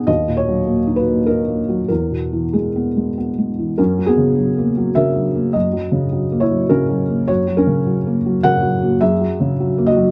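A close, detailed recording places a felt-muted upright piano up front with light reverb. This short neoclassical minimalist piece is cut from a longer work, in a three-beat metre played with a free, rubato feel. The piano plays alone throughout, its tone muted, dark and a little boxy, with a short sustain that gives each note an intimate, close-at-hand quality across a range from the low bass up into the upper middle. The harmony moves from D# minor to E, then opens onto F# as a second section begins at 3.8 seconds. The mood is wistful and reflective, a brief glimpse of a quiet, inward piece.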